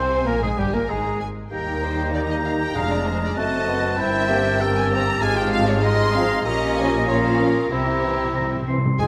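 A moderate scoring-stage reverb surrounds this urgent, stormy excerpt of a quick classical-period orchestral movement in 2/4 at 97 BPM, where a rich, smooth violin section carries the melody up to C6 over a second violin section, a clear oboe, a hollow silver flute and a warm clarinet weaving second lines. Beneath them a distant bassoon and a focused viola section accompany, a dark French horn section holds sustained chords, and lush cellos join bowed double basses on the bass line. The chords move restlessly from Absus2 through diminished harmonies toward C, while round, dry timpani strike briefly at 2.8 s and return for a fill from 7.7 s.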